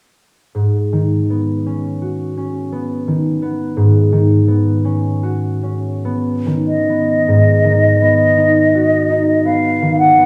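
Classical and impressionist in style, this wistful, hazy duo for flute and concert harp is cut from a longer piece and drifts in a rubato triple metre. The concert harp opens the texture at 0.5 s, its mellow, thumb-plucked accompaniment ringing in its lower and middle register. The flute enters at 6.7 s with a pure, hollow tone, its tongued melody carrying vibrato in a high register. A second section begins at 7.3 s, and the two instruments continue together to the end. Both parts sit up front, yet a wet recital hall reverb places the listener further back in the room, giving the sound a hazy bloom.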